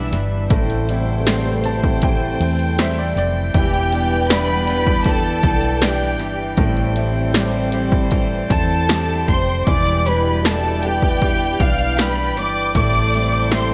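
A lush, up-front violin section carries the melody of this melancholic pop ballad, its bowed tone smooth and even with vibrato. Beneath it, a close string section holds sustained chords with a reedy, gut-string, period-style colour, while a mellow French horn section sits in the background on a second line touched with digital delay. A concert grand piano, intimate and polished with audible action noise and a subtle chorus, plays accompaniment and adds a fill from 1.3 to 3.5 seconds, alongside a fingerpicked steel-string acoustic guitar tracing arpeggios further back. A dark, round hollow-body electric bass anchors the low end, and a punchy, tape-tinged analog drum machine with kick, snare and hi-hat enters up front at 0.1 seconds. The harmony moves between Em7 and Am7 in a straight 4/4, and the bright 1980s-style digital production wraps this emotional fragment in a moderate hall reverb.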